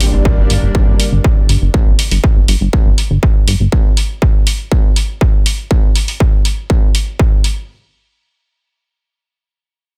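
Melancholic and driving, this short cut of melodic techno in G minor moves at 121 BPM in a straight 4/4, opening on a lush, warbling unison pad holding a G minor chord with chorus and sidechain pumping alongside a very quiet electronic impact, both ending at 1.7 s. A punchy, funky analog bass pluck with a ring-modulated sawtooth edge sits up front on a low G with sidechain pumping until 3.7 s, while a distorted, layered kick enters at 0.3 s and dominates the mix. Layered electronic hats with a soft-clipped snare carry on to 7.5 s, re-recorded in a large room and set in a digital ambience within a dense, heavily limited modern master.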